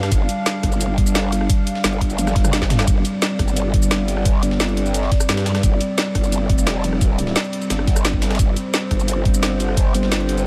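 A straight 174 BPM 4/4 groove drives this tense, aggressive excerpt of dark technical drum and bass, built on an overdriven knocking electronic kick, an overdriven drum and bass kit with a woody snare, bright hats, rim clicks, shaker and toms, and a very quiet, gritty, pitched-up breakbeat sampler-style kit underneath, with a drum fill at 2.2 seconds. Up front, a saturated, wobbling growl bass with chorus, overdrive and sidechain pumping snarls beneath a deep, moody analog pad of detuned square and sawtooth tones that sustains a G5 chord with a moving notch, chorus and its own pumping. The whole mix is soaked in a huge, dreamy ambient reverb, tuned slightly flat to A4 = 438 Hz.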